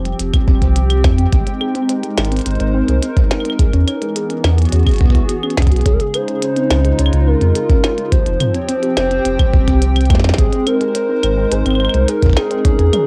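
A gritty, thumpy sampler-style kick sits up front beside a round sine sub bass in this wistful, intricate IDM fragment, where a glitchy electronic kit of tiny snare, clicky hats, claves and toms ticks alongside hollow, flute-like pad chords, a lo-fi sawtooth pluck plays mellow arpeggios in the background through a filter sweep and tape echo, and a nostalgic, wave-folded lead with vibrato and analog delay enters at 5.9 s, the pad, pluck and drums carrying a cassette-tape haze and the whole piece sitting in light reverb.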